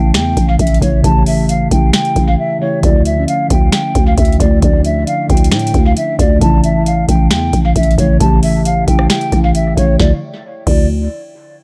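A mellow, hollow concert flute carries the melody with vibrato, a crisp attack and rolled-off highs, trailing dub echo through this dark, melancholic trap excerpt in D harmonic minor at 134 BPM with a half-time feel. Beneath it, muted, felt-like synth keys with a warbling vintage chorus and dub echo move between A and Dmadd9, while a growling, buzzy 808-style bass holds the low end. A booming analog drum machine sits up front with a deep kick, crisp snare, metallic hats, finger snaps, rim clicks and crash. A brief break arrives at 2.4 seconds in a dry, echo-heavy mix.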